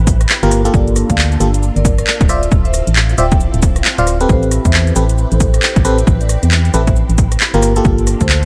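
Bouncy and soulful, this short two-step garage cut swings over a dry, crackly vinyl surface, with a punchy, overdriven electronic kick and a house kit of metallic hats, cabasa, handclaps and rim clicks that sounds re-recorded in a large room. A dark, hollow, organ-like FM bass sits up front beneath glassy, bell-like FM electric piano stabs entering at 0.4 seconds with warbling chorus and tape echo, while a silky string machine hums softly in the background through phaser, ensemble chorus and sidechain pumping. A mellow soft-mallet vibraphone melody rings in at 0.7 seconds, drifting through tape echo over minor-ninth chords that move from Am9 through Gm9 and Dm9.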